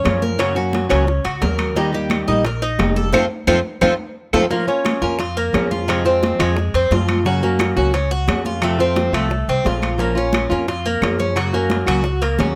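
Warm and danceable, this short cut from a longer Cuban son and guajira piece moves at a brisk 175 BPM in straight 4/4, set in Bb minor. Up front, a bright, boxy flamenco guitar fingerpicks the accompaniment with audible finger squeak, while the Cuban tres spins arpeggios on its metallic double strings, some doubled at the octave. Beneath them, a dark, thumpy upright bass with gut strings is plucked close and present, its woody tone anchoring the harmony as it cycles through Gb, Eb and F before settling on Bbm, Fm and back around. Among the percussion, high-tuned congas with hard hands sit in the background alongside woody claves, round low-tuned bongos are kept very quiet, and metal-shelled timbales ring out, while the claves drop out at 12.0 seconds. A band accent arrives at 3.1 seconds, with a drum fill leading into the repeat of the opening section at 4.5 seconds, all captured with close, detailed microphones and light reverb.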